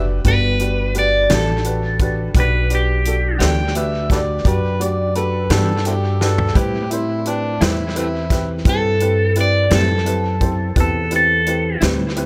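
At 57 BPM in 12/8 with a straight feel, this soulful, smoky slow blues in E minor moves from Em7 to Am7, with a natural country drum kit playing a fill at 6.2 seconds alongside a woody pizzicato upright bass, both up front. A twangy, slightly broken-up electric guitar carries the melody through a phaser, while a gritty overdriven harmonica with tongue slaps and scooped notes plays a second line until 8.5 seconds. A clear, slightly detuned upright piano and a clean, hollow-body semi-hollow guitar with tremolo fill out the accompaniment, tape echo trailing both of them and the drums in a small, echo-heavy room.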